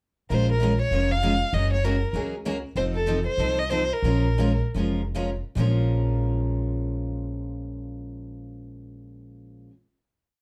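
This is a short, complete piece of acoustic string swing in the jazz manouche style, in Bb minor with a fiery, swinging mood, moving at 136-196 BPM in 4/4 with swung eighths, and slowing down from 2.8 to 5.6 seconds. After a brief pickup, a single bowed violin carries an expressive, motif-based song melody until 4.6 seconds, close and up front, with vibrato, a soft attack, portamento and a plate reverb. Two picked steel-string guitars supply the rhythm: a bright, full-bodied jumbo plays four to the bar, short and accented on two and four, while a boxy parlour guitar with old strings adds a second rhythm part. A pizzicato upright bass, growly, thumpy and up front, plays a two-beat root and fifth line beneath the changes from Bbm7 through Gbadd9 and F7 back to Bbm7. The piece closes on a final chord held from 5.6 seconds, in a dark, moderately reverberant studio sound.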